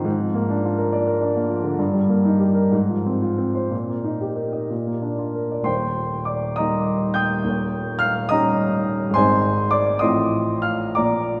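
Set in a wet church reverb, this short passage cut from a longer romantic character piece features a solo upright piano, woody, polished and up front with long sustain, spanning the low bass to the high treble in a hopeful, warm mood, moving in a rubato 6/8 at about 60-71 BPM in Eb major, its harmony settling onto Eb at 5.7 s for a new section that passes through Eb7 and Ab before closing on F7/A.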